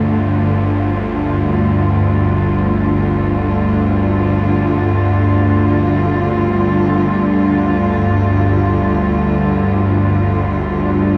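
Dark ambient drone in free time, this unsettling 11.2-second fragment of a longer piece sets a muted symphonic cello section, played con sordino with light vibrato, in sustained chords that sound veiled and close, over a single F6/G harmony. Beneath it a tense, string-like drone holds the low register with a sawtooth edge, a noise layer and ring modulation, its slow attack and long release bathed in its own reverb. A cathedral space with a 6.2-second decay wraps the whole in a cavernous, shadowy wash.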